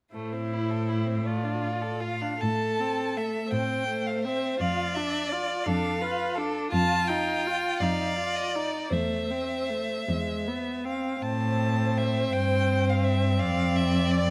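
The viola sits up front and close with a soft attack, expressive portamento and vibrato as it carries the accompaniment through its middle range. This is a slow, romantic classical movement for string quartet in A minor, taken at 49-57 BPM in dotted quarters in 6/8 with a rubato feel, and its mood is yearning and melancholic. The first violin sings the melody with smooth, even vibrato, while the second violin's focused line moves beneath it with a smooth top. The cello anchors the bass from close by, sounding a little louder than the others, with a steady, vibrato-laden tone. All four bowed parts, each played by one player, have a rich sound, and they play together from 0.1 to 14.3 seconds through a brief opening section and a longer second one beginning at 2.4 seconds. The harmony moves from A minor through D minor and an F7sus2 to E before returning home, captured by close, detailed microphones with light reverb in this passage cut from a longer piece.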